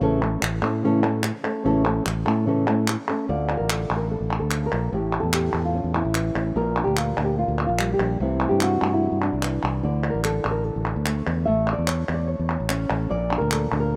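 A dark, thumb-plucked flamenco guitar carries the melody over a direct, amped fingered electric bass from the opening, with crisp palmas hand claps joining at 0.2 seconds. This fiery, dramatic flamenco moves at 147 BPM in a straight 4/4 in A phrygian dominant, shifting at 3.3 seconds from its opening A chord into a longer passage moving through Dm, A, Gm/Bb, C6, Dsus2 and A again before landing on Bbmaj7. All three parts sit up front in a rough home-demo mix with a light, small-room reverb, and the passage is cut from a longer piece.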